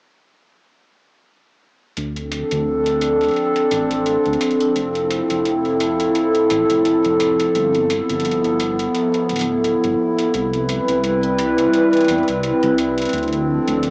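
Lightly swung 16ths in 4/4 carry this glitchy, melancholic IDM excerpt, with metallic analog electronic hi-hats and a deep, rumbling detuned saw bass, tube-saturated and swept by a filter, both arriving at 2.0 seconds. Just after, at 2.2 seconds, an up-front warbling pad of nostalgic lo-fi square and triangle tones, colored by ring modulation, chorus and its own reverb, holds sustained chords moving Dm7, Fmaj7, G13, Cmaj7 and back to Dm7. A moderate spring reverb and a home-cassette, small-speaker sound give the whole a faded, intimate haze.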